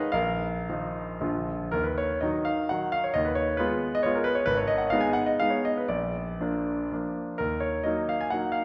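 A clear, polished concert grand piano plays alone and up front in this short fragment, its deep bass and short sustain shaping a romantic triple-time dance in 3/4 with dotted rhythms, in Eb minor tuned to A4 = 439 Hz. The rubato tempo moves between 106 and 146 BPM, and the nostalgic, wistful mood settles after a brief opening into a longer passage from 1.7 seconds that moves through Ebm, Fm7b5/Eb, Abm and Bb before returning to Ebm. The piano sits in a reverberant recital hall whose lingering acoustic surrounds the playing.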